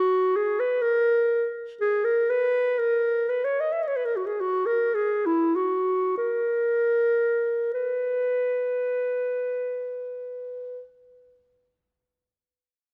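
Rubato and free in its pulse, this lyrical, nostalgic classical fragment of a longer piece features a mellow solo clarinet, placed up front and heard from 0.0 to 10.8 seconds in its middle register, slowing down through its opening before turning to a new section at 7.7 seconds, all set in a moderate scoring-stage reverb that lingers gently around the line.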